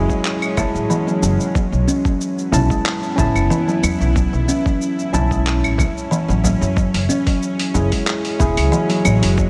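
Light studio reverb wraps this short cut from a longer organic downtempo piece, an earthy, mystical groove at 92 BPM in 4/4 with a gentle swing on the sixteenths. A worn, slightly out-of-tune tine electric piano carries the accompaniment, lightly overdriven as if through built-in speakers, low-pass filtered and trailed by tape echo with sidechain pumping. Beneath it, a tense, string-like bowed-like drone holds sustained chords with a slow attack, vibrato and a long release, while a woody kalimba plays short thumb-plucked arpeggios in a boxy small room, its tone moved by a filter sweep throughout. A dark, woody upright bass anchors the low end with pizzicato notes that pump along with the sidechain. From 0.1 seconds a gritty, thumpy electronic kick sits up front beside an overdriven, compressed sampler-style kit of claves, handclaps, hi-hat and shaker, and a deep frame drum played with soft hands murmurs in the background from 0.6 to 8.5 seconds. 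The harmony moves from F#m7 to B7sus4 and settles on F#7(no3) at 6.8 seconds.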